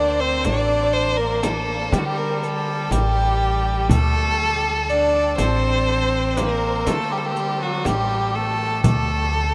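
In a straight 10/8, this melancholic, soulful Arabic maqam ensemble excerpt sets a rich, bowed violin melody with vibrato up front over a mellow cor anglais second line and a woody, thumpy pizzicato upright bass on gut strings, while a very quiet clay-shelled darbuka, a deep frame drum and a riq with dark, close, dry jingles join at 0.4 s, all of it heard in a vast, echoing space with a huge ambient reverb.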